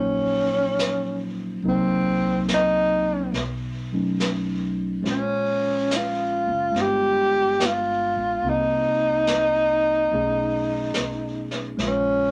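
Intimate and melancholic, this slow jazz ballad moves at 71 BPM in 4/4 with a gentle swing on the eighth notes. A breathy tenor saxophone carries the melody up front, its mellow subtone colored by vibrato and scooped notes, with a smooth top. Beneath it, a clean tine electric piano heard through its built-in speakers supplies the harmony, moving through dark minor and altered chords such as Ebm9, Cm7b5, B9 and G7b9. A woody pizzicato upright bass with steel strings sits low in the mix, and a vintage brush kit enters at 0.8 s, its medium-tuned snare brushed alongside the hi-hat, warm with a rolled-off top. A modest small-room reverb of 0.6 s wraps the group in a close, late-night ambience across this 12.3-second passage cut from a longer piece.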